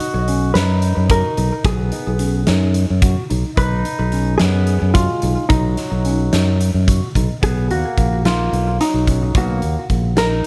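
A growly, up-front fingered electric bass anchors this bright, intricate progressive instrumental in 7/8, cut from a longer piece, alongside a big rock kit with a fat snare and punchy kick ringing in a stone room, while a dark, clean hollow-body jazz guitar carries the melody through plate reverb and digital delay, a mellow, distant flugelhorn plays a classical-style second line, and a barky, overdriven tine electric piano spins arpeggios through a phaser in the background, the harmony moving from Cb6 to Cbmaj7 as a new section begins at 7.4 seconds.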